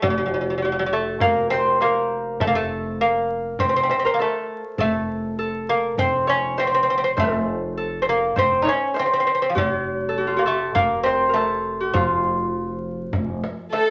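This festive, warm excerpt of a Persian modal ensemble in F dastgah homayun opens with a mellow lute carrying the melody, its fingerpicked gut double strings, some doubled at the octave, sitting up front, alongside a fingerpicked Celtic harp whose ringing second line sits just above it. Beneath them, an upright bass plucks a woody, dark F in the low register, stopping at 13.4 s. A deep tombak played with hard hands sits in the background of a straight 4/4 at 101 BPM, its sound carrying the feel of a small room. At 13.7 s, a rich chamber violin section briefly enters up front on a focused, bowed A with vibrato. A large studio reverb bathes the ensemble, and a layer of vinyl crackle adds an aged surface to the sound.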